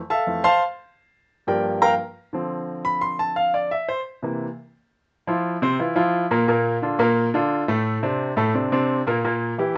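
A polished, up-front baby grand piano sits in a moderate studio room with a short, natural ambience, playing alone from 0.1 to 9.7 seconds in this brief cut from a longer piece. It is sunny, festive Latin music in F major at a brisk 174 BPM in straight 4/4, with the piano ranging from F2 to C6 over chords such as Fmaj7, Gm7, Dm7 and C7. At 5.1 seconds a new section begins, moving through F5, Bbmaj7 and D5 before closing on a rootless C7.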